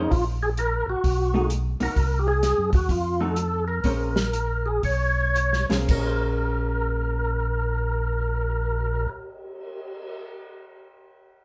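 A dark, roomy live-band sound with moderate reverb and a rolled-off top opens this late-night, smoky soul jazz organ trio excerpt in Bb minor, swung in 4/4 at 110-130 BPM. The lead tonewheel organ carries the melody with a fat, lightly overdriven tone, percussive second-harmonic attack and audible key click, turning through a slow rotary speaker with chorus vibrato. Beneath it, a second organ supplies the bass line in a mellow, round register, clean and also spun by the slow rotary speaker with chorus vibrato. A vintage hollow-body electric guitar adds picked, compressed accompaniment in a shadowy, clean voice. The acoustic drum kit sits up front, dry yet pumping, with dusky cymbals, swells and crashes, hi-hat, a medium-tuned snare and a tight kick. The band slows from 2.0 to 5.9 seconds through chords such as Cdim and F7b9, and a new section begins at 5.9 seconds on Bbm9.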